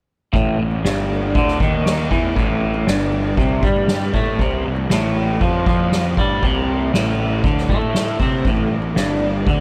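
A straight 4/4 pulse at 118 BPM comes from a soft-mallet drum kit with a punchy kick, medium-tuned snare and ride cymbal, joined by very quiet, high-tuned, ringing congas, in this dark, mysterious psychedelic rock fragment in A minor cut from a longer piece. A twangy, clean, double-tracked electric guitar with phaser plays the riff up front over A minor, then C5 from 4.4 seconds, while a punchy picked bass with overdriven fuzz holds the low end. The harmony drops out at 8.5 seconds, and the whole dreamy mix is soaked in a huge ambient reverb with a 7.3-second tail.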